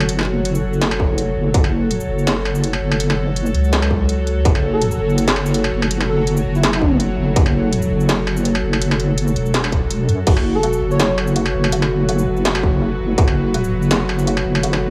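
A sustained, string-like drone in F# minor opens this cinematic, spacious half-time drum and bass excerpt at 165 BPM, its tense, bright chords carrying vibrato, built-in reverb and sidechain pumping, while a deep, dark wobble bass with chorus sits up front beneath it. An industrial drum kit plays from the start with a clanging snare, smooth hi-hats, shaker, crash cymbal and struck metal, all with a slight swing on the sixteenths. A distorted electronic kick arrives at 1.0 seconds and returns in short hits, sitting up front in the mix. At 4.7 seconds an airy, dreamy lead drifts in the background, its detuned sine tone softened by chorus, cassette tape colour and dub echo. From 10.3 seconds a felt-muted upright piano adds mellow, intimate arpeggios on F#4 with digital delay and audible action noise, all set in a small room with light digital ambience.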